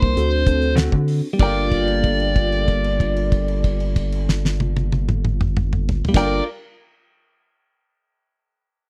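Straight-eighth soul blues in G minor at 94 BPM, mournful and brooding, this short excerpt opens by slowing down over a D7 before settling on Gm7 at 1.4 s, where a held note sustains until 6.1 s amid an up-front overdriven electric guitar melody, a rubbery, hollow square bass, a damped 70s drum kit with a fat snare and dark cymbals, and a mellow tine electric piano with phaser, while bright, compressed clean guitar stabs with spring reverb enter at 0.8 s and a woody upright piano second line joins at 1.4 s, captured in a dry, close 1970s-style studio sound.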